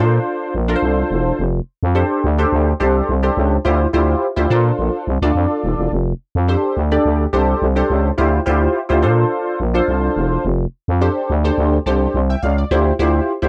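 A growling, thick FM bass and a punchy, detuned sawtooth polysynth comp with a filter pluck and chorus open together, both up front, in a danceable, feel-good early-eighties boogie funk groove at 106 BPM in F major. The comp moves through Bbmaj7, F6 and Dm11 in a repeating cycle, its tone evolving with a moving notch, while the bass holds down the low end with sustained notes that have a fast attack. The sound is dry and close, in the manner of a 1970s studio, and this 13.5-second passage is cut from a longer piece.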